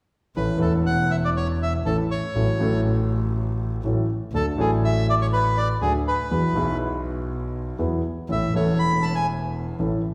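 Passionate and playful, this tango excerpt moves at 121 BPM in 4/4 with a rubato feel in A major, the harmony passing from A through F#m/A, D and Eadd9 before returning to A. A reedy, dark bandoneon carries the melody up front from 0.4 to 9.3 seconds, while a smooth, vintage-toned grand piano accompanies and a single bowed double bass, played sul tasto with light vibrato, a soft attack and an airy bow, holds the low end in an intimate, close sound. The trio sits in a wet recital hall reverb with a 1.7-second decay, as if heard in a church or concert hall.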